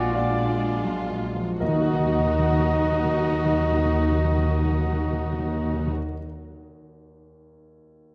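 Passionate and tragic, this romantic movement for piano and orchestra in Eb minor unfolds at a rubato 41 BPM in 12/8, slowing through its opening 1.6 seconds on a Bb7 chord before settling onto Eb minor, as an intimate grand piano with audible action noise carries the melody alongside a lush, expressive violin section while a second soft-attack violin section, an airy hollow flute, a present oboe and a very quiet clarinet weave second lines, an intense viola section supplies accompaniment, a distant roomy trumpet adds stabs, a mellow French horn section holds sustained chords, smooth cello and double bass sections anchor the bass, and hard-mallet timpani sound close and dry, all in a dark, reverberant recital-hall setting until the orchestra drops out at 5.9 seconds and the piano rings alone to 8.1 seconds.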